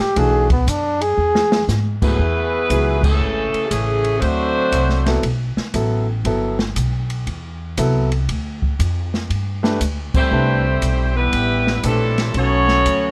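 A veiled, bucket-muted trumpet with scooped notes opens this sultry, dramatic big band swing excerpt at 118 BPM, carrying the melody until 1.7 seconds over woody pizzicato upright bass, an intimate baby grand piano with audible action noise, and a dark, boomy open jazz drum kit. From 2.0 seconds a mellow, vintage saxophone section takes over the melody, with a clear, close-miked trombone section on a second line beneath it, and the band hits an accent at 3.0 seconds. Both horn sections then give way to the rhythm section through the middle before returning to close, all in light reverb.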